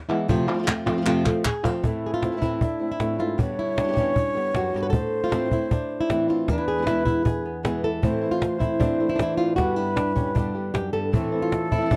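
A straight 4/4 pulse is driven by a woody, soft-handed cajon with faint snares from 0.3 s, while crisp palmas hand claps, already sounding from 0.1 s, continue only until a fill at 0.9 s leads into the next section at 1.8 s. Up front, a bright, boxy fingerpicked flamenco guitar carries the fiery, passionate melody with audible finger squeak, while a second, warm flamenco guitar plays background stabs over chords of Am, G and E. From 1.8 s a distant silver concert flute adds an airy, mellow, slightly unsteady second line with a chiffy attack, all within a dry, close 1970s-style studio sound touched by light reverb in this passage cut from a longer piece.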